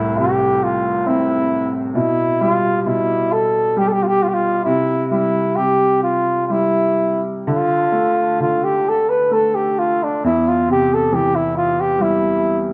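A mellow flugelhorn and a clear upright piano begin together, opening this mournful, longing slice of Celtic folk cut from a longer piece. Moving at a slow 65 BPM in 3/4, the pulse feels uneven and freely stretched in rubato. The flugelhorn carries the melody in a classical style between D4 and B4, its tone punchy yet distant, with a roomy sense of space around it. Beneath it, the piano's woody accompaniment sits low, from C2 to C4, and both parts sound up front. The harmony passes through Am/C, G13/B, C5 and Dm before settling on C/E, all within a single section tuned to A4 = 439 Hz and bathed in a moderate scoring-stage reverb, with the piano ending at 12.7 seconds.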